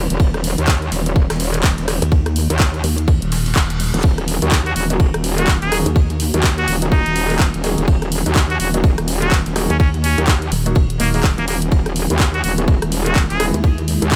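Swaggering, aggressive bass house at 125 BPM in Eb phrygian with a swung sixteenth feel, driven by a tight, tape-warm electronic kick up front and a big-room dance kit of handclaps, hi-hat and rim click, with a very quiet jazz brush kit adding dark ride cymbal and snare beneath; a metallic, saturated FM wobble bass with chorus, overdrive and sidechain pumping is joined from 2.0 s by a heavy, detuned pluck wobble bass, under a very quiet, airy sawtooth pad holding sustained chords; a background reverse cymbal sounds at 3.3 s before a grand piano with deep bass stabs through digital delay from 4.4 s and a nasal straight-muted trumpet plays a brilliant classical-style solo melody with vibrato from 4.7 s, set in a small room ambience.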